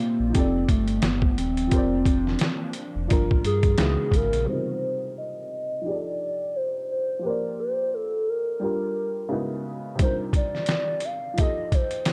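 Swung sixteenths at 87 BPM in 4/4 drive this reflective, hazy lo-fi hip hop excerpt in C dorian. A muffled, pitched-down sampler-style drum kit with a thumpy kick sits up front beside a deep sine sub bass, while a very quiet, warbling, flute-like pad holds chords. A woody, slightly detuned upright piano with audible action noise and cassette tape colouring accompanies throughout, and a hollow, clarinet-like synth lead with vibrato and chorus carries the melody. Pad, bass and drums drop out at 4.5 seconds under a filter sweep, until the drums return at 10.0 seconds.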